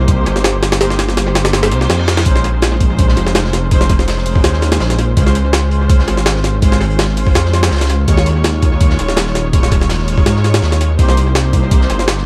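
Drum and bass with a jungle edge, frenetic yet nostalgic, this excerpt is driven by an up-front, gritty sampler-style kit with a thumpy kick and pitched-up, compressed hits bathed in tape echo, while a deep, rumbling detuned saw bass with tube saturation sits just as forward underneath. Veiled, con sordino strings sustain dark chords moving from Cm7 through Bbm11, Dbmaj7 and Eb9sus4, and a reverse cymbal in the background at 1.8 seconds ushers in a very quiet, crunchy breakbeat kit with a rolled-off top at 2.3 seconds. The echo-heavy mix carries vinyl crackle and a small-room reverb.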